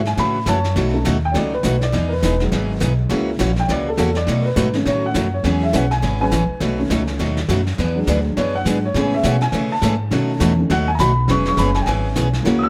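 Cheerful and down-home, this short excerpt of swinging western swing country moves at a brisk 205 BPM in E major, with a dark, mellow upright piano taking a solo over changes that cycle through sevenths, ninths and a closing E69. A thumpy, up-front pizzicato upright bass with gut strings anchors the bottom, while a bright, boxy parlour steel-string guitar is picked in support and a vintage kit played with brushes adds a soft, rolled-off pulse from a small, pumping room. Light reverb gives the whole band a cosy sense of space.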